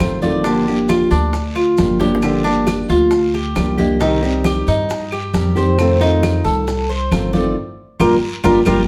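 Cuban son in the guajira style, nostalgic and sultry, this short cut from a longer piece puts a metallic, picked Cuban tres playing arpeggios on its double strings up front beside a small, fingerpicked nylon-string guitar comping through Gm7, Cm and F7, while a thumpy, bright pizzicato upright bass anchors the bottom. Behind them sit ringing hard-hand congas, round low-tuned bongos, woody claves, a raspy guiro and grainy, vintage-sounding maracas. A drum fill lands at 2.0 seconds and the full band hits an accent from 7.6 seconds, all heard from further back in a reverberant studio room.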